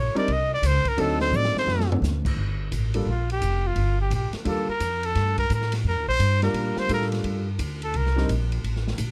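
A brisk swing at 172 BPM in 4/4 drives this late-night, small-group jazz piece in G minor, cut from a longer performance, with woody pizzicato upright bass sitting up front and an open drum kit of dark cymbals, medium-tuned snare, boomy kick and toms that adds a fill from 1.3 to 2.0 seconds. A clear, close-miked trumpet carries the melody as a solo with light vibrato, while a natural-sounding grand piano accompanies over chords such as Cmadd9, D7b9 and Gm9. The trumpet and piano stop at 8.3 seconds, leaving bass and drums to play on until 9.1 seconds, all captured with close, detailed microphones and light reverb.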